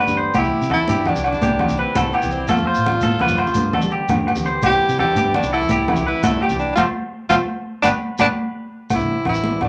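Highlife guitar band music in 12/8 at 112 BPM in dotted quarters, joyful and danceable, in C major, cut from a longer piece. A warm tenor saxophone carries the melody up front in a jazz style, with light vibrato, a soft attack and scooped notes, entering at 0.4 seconds. A twangy, clean electric guitar with spring reverb plays bright picked arpeggios until 8.3 seconds, while a picked acoustic archtop guitar sits in the background with audible finger squeak. A round, dark fingered electric bass with a foam-muted tone anchors the low end. High-tuned congas struck with hard hands sound thick-skinned and distant, joined by ringing, vintage agogo bells and a grainy, mellow shekere. The chords move from C through F and G and back to C, and the band hits accents together from 6.8 to 8.9 seconds, all set in a small, wet room.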